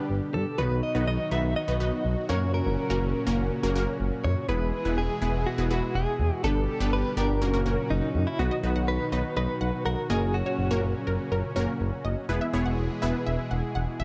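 In a straight 4/4 at 123 BPM, this nostalgic, wistful synth-pop piece in B major sets a punchy, detuned unison pluck with phaser over a brassy, vintage analog pad with chorus and a smooth gliding synth bass, while an up-front, direct-recorded clean electric guitar carries the melody with tremolo until 10.8 seconds, and a second bright pluck line with tape echo enters at 8.5 seconds, all in a dark production with light reverb.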